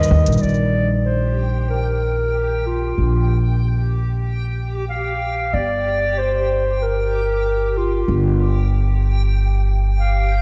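A straight 4/4 pulse at 94 BPM opens this hopeful folktronica excerpt in Bb major with a brief flicker of smooth, overdriven electronic cabasa and hi-hat and a ringing, thumb-plucked concert harp roughened by vintage 12-bit sampler grit and analog delay, both gone by 0.6 seconds, while a woody, thumpy upright bass on gut strings and a dark, roomy, soft-attacked solo clarinet with analog delay sit up front throughout, joined from 1.2 seconds by a bright, detuned, granular backwards swelling texture with subtle chorus, the dreamy mix soaked in lush hall reverb as the harmony moves from Bb5 to G7(no3).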